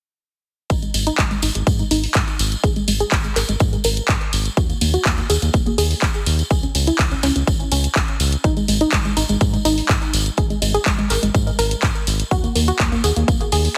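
A lush, detuned unison pluck spins sidechain-pumped arpeggios through digital delay and a filter sweep in this expansive, dreamy progressive house excerpt at 124 BPM, riding over a round, deep analog bass, a punchy layered kick, big-room handclaps and hi-hat, and a jingly tambourine across G#sus2, D#5 and C#5 chords, all under light reverb and heavily compressed, radio-style polish.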